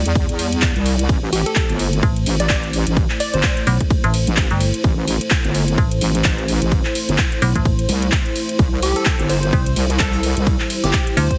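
A saturated, square-wave wobble bass sits up front from the very start of this bass house excerpt, its detuned, resonant tone given extra body by chorus and tube saturation while sidechain pumping makes it breathe with the beat. At 128 BPM in 4/4 with a 16th-note swing, the mood is swaggering and bouncy, set in A minor and moving between C and Am chords. A punchy, tape-tinged electronic kick drives the groove alongside a house kit of handclaps, ride cymbal and metallic hi-hats. At 2.0 s a digital FM bass joins, its clangy, overdriven attack decaying quickly, and it too pumps against the kick. Beneath it all, a moody sawtooth pad with a sub octave and slow attack holds sustained chords, while a crystalline wavetable pluck with ring modulation, a moving notch and digital delay appears from 1.3 to 3.5 s and returns at 8.8 s. The overall sound is heavily compressed, with a squeezed, radio-like character.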